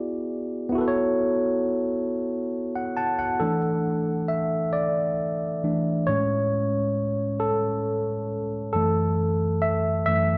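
A clean, up-front tine electric piano carries this yearning, sultry R&B fragment on its own, moving through E9, A69, E7sus4, Amaj7 and F#m7 across a span from F#2 to A5. It sways in a slow 6/8 at 45 BPM counted in dotted quarters, turning into a solo passage from 3.4 s to the cut at 10.4 s. Slapback echo on the piano and a moderate plate reverb give the dark production a lingering, intimate glow.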